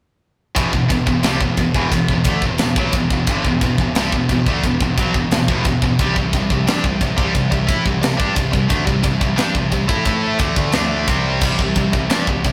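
A straight 4/4 pulse at 88 BPM drives this aggressive, epic heavy metal excerpt in E minor, with a tight, up-front drum kit pounding kick, snare, ride and crash under bright cymbals, and a distorted, double-tracked high-gain guitar riffing on an E5 chord before shifting to C5 at 6.0 seconds. Behind them, a fuzz-laden picked electric bass adds punchy, overdriven low end, all three parts entering together at 0.6 seconds and playing through to 12.5 seconds. A moderate stone-room reverb and rough rehearsal-room sound give the piece a raw, live edge, and it is cut from a longer piece.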